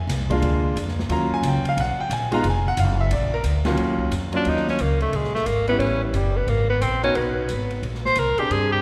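A clear tenor saxophone enters up front at 4.4 seconds to carry the melody, played with subtone and scooped notes in a vintage jazz style, over this cool, moody excerpt of small-group swing and bop. From the start, a bright, brilliant grand piano comps through shifting minor and dominant chords while a woody pizzicato upright bass with steel strings holds the low end. A smooth acoustic drum kit with dark cymbals, a boomy kick and a rolled-off top sits further back, all inside the long, wet reverb of a church or concert hall.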